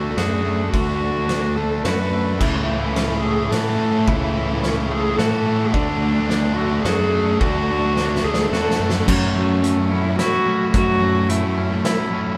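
Cinematic and euphoric, this post-rock excerpt at 108 BPM in 3/4 sets a veiled, muted cello melody over twangy spring-reverb guitar arpeggios, a thick, dark fuzz guitar riff, overdriven fingered bass and a distant, roomy indie drum kit with a fat snare, while a bright distorted guitar riff sits in the background from 2.4 to 9.1 s as the band, playing live in a small room, builds toward a drum fill at 8.0 s and a shift from D to F#m7.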